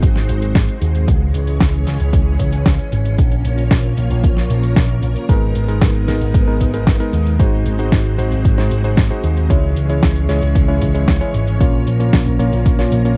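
Italo disco at 114 BPM in a straight 4/4, nostalgic and bittersweet, built on a lush, slow-attack string machine with ensemble chorus holding sustained chords over a round, dark picked bass with an envelope filter and a punchy, tape-warm electronic kick that drops out at 12.8 seconds. A gritty, sampler-style drum kit adds hi-hat and a fat snare, while a vintage electric grand piano with a clangy low end enters at 5.3 seconds playing short stabs as the chords move through G#7, C#m and A#m. The sound is dry and close in a 1970s studio manner, dusted with vinyl crackle, in a short cut from a longer piece.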